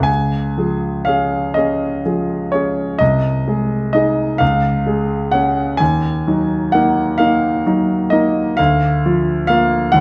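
Heard up close in a moderate recital-hall reverb, a warm concert grand piano with a deep bass, smooth vintage tone and up-front presence fills this short, dreamy excerpt of a romantic classical nocturne. The solo piano moves through a tender, rubato 12/8 in Db major at a slow 39-45 BPM, spanning C2 to Ab5. The harmony passes from Db through Ab/C, back to Db and on to Ebm before arriving at Bb/D at 8.6 seconds.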